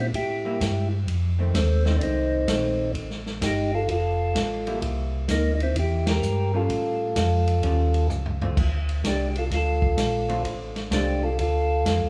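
A percussive tonewheel organ carries the melody through a slow rotary speaker from the first moment, over a mellow organ bass line with key click and vibrato and a dark, clean hollow-body electric guitar comping underneath, in a greasy, soulful soul jazz organ trio excerpt with a swung 4/4 feel. A vintage drum kit with dark cymbals, a punchy kick and a rolled-off top joins almost at once, driving through chords that move from a rootless C7 to F7, A7b13 and Dm7, with a band accent at 6.0 seconds and a drum fill from 8.1 to 8.6 seconds. The guitar drops out at 11.2 seconds, and the rough home demo mix sits in small room ambience with studio reverb.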